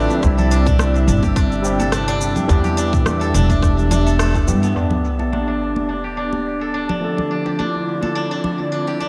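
This hypnotic, meditative slice of organic downtempo opens with a bright, silvery steel-string zither ringing out fingerpicked arpeggios over a woody, up-front pizzicato upright bass, a barky, gritty overdriven tine electric piano and an airy, breathy pad sitting dark and soft in the background, with a faint wind-like tuned noise texture hovering high above. At a gently swung 106 BPM in 4/4, a tight electronic kick, a produced drum kit of rim clicks, shaker and toms, and very quiet, close, dry congas and bongos struck with hard hands set the groove, while sidechain pumping makes the electric piano, pad and bass breathe. The harmony moves from C to Em7, and a band accent lands just before the bass and drum kit drop away at 4.7 seconds. At 4.8 seconds an electronic sub drop hits as an impact, the chords shift to G and then Dm7, and a filter sweep passes over the zither as the percussion carries on. 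Analog delay trails the zither, electric piano and drum kit, the pad has a chorus shimmer, and a moderate echo-chamber reverb gives the whole mix a deep, echo-heavy space.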